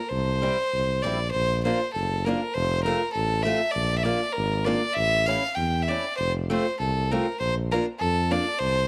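A bright, biting fiddle opens this festive snippet of alpine folk dance music, bowed by a single player who sits close and up front with a light vibrato and an airy edge to the bow. A mellow tuba joins at 0.1 seconds to carry the bass, its smooth top and classical-style tone also placed up front and touched with a gentle vibrato of its own. At 0.4 seconds a picked old ladder-braced acoustic guitar enters underneath with a boxy, warm accompaniment, sitting lower in the mix than the fiddle and tuba. The music moves in a straight 2/4 with a jolly, dance-band character, cycling through chords of C, Bb, F and A. Light reverb and a small-room ambience keep the sound intimate, and the passage is cut from a longer piece, ending at 8.9 seconds.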